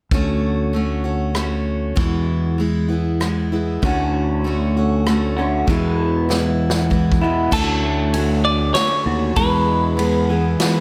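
A lightly reverberant, jangly folk rock and heartland rock excerpt in 3/4 at 97 BPM, where a bright, fresh-stringed picked acoustic guitar with finger squeak, a warm up-front fingered bass and a natural country drum kit with punchy kick and medium-tuned snare roll on an open-road groove between Dmaj7 and E, joined at 3.8 seconds by a slightly broken-up electric guitar riff through a phaser, and, after a drum fill, at 7.5 seconds by a clean hollow-body guitar melody bathed in spring reverb.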